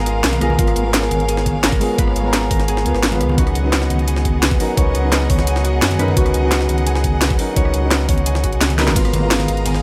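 A dark, worn piano, smooth bowed strings, a fingerpicked harp with dub echo and a deep, sustained sine sub bass open this soulful, rolling liquid drum and bass excerpt in G# dorian at 172 BPM, moving from G#m69 to C#9sus4 at 3.4 seconds. Up front, an overdriven kit with a cracking snare and bright hats drives the groove, layered with a gritty, pitched-up jungle sampler kit and distant, ringing congas in the background, while a knocking electronic kick enters at 0.6 seconds. The piano carries delay, a light small-room reverb colours the mix, and a drum fill at 8.8 seconds leads back to G#m69.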